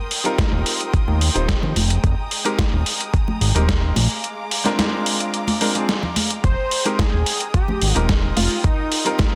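Dense, heavily limited and lightly reverberant, this cosmic, sleek nu-disco clip in F dorian moves at 109 BPM over a Eb6, Fm11 and Bb7 progression, with a gritty, overdriven electronic kick and a dusty sampler-style kit of snare and hi-hat up front, bright close congas and a fat, saturated analog bass with filter sweeps. A lush bowed violin section with vibrato holds sustained chords and a brilliant grand piano with delay plays accompaniment, both pumping from sidechain compression. The kick drops out from 4.2 seconds and returns at 6.4 seconds, as a thick, detuned unison lead enters with the melody, trailing dub echo.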